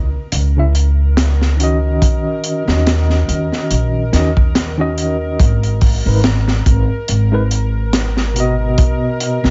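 A worn, slightly out-of-tune tine electric piano with tremolo, tape echo, 12-bit sampler grit and a filter sweep enters at 0.6 seconds over a woody pizzicato upright bass and a gritty, saturated breakbeat kit with a punchy kick and high-tuned snare that joins at 0.3 seconds, while a faint, tense string-like drone with vibrato hangs beneath this dark, brooding trip hop excerpt at 71 BPM with a swung 16th-note feel, moving from C#madd9 through D#m7 and G#madd9 to B in a small room.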